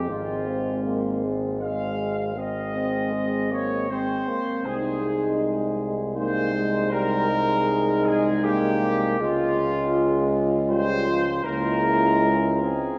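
Classical, hymn-like brass band music in 3/4 at 79 BPM, tender and rubato, moving from F minor into Ab major at 6.9 s in this brief fragment cut from a longer piece. A dark, distant trumpet section carries the melody up front, with a shadowy French horn section on a second line. Two euphoniums supply accompaniment, one with light vibrato and a smooth top, the other vintage-toned in the background, above a warm tuba bass, with the sound bathed in a long, wet church reverb.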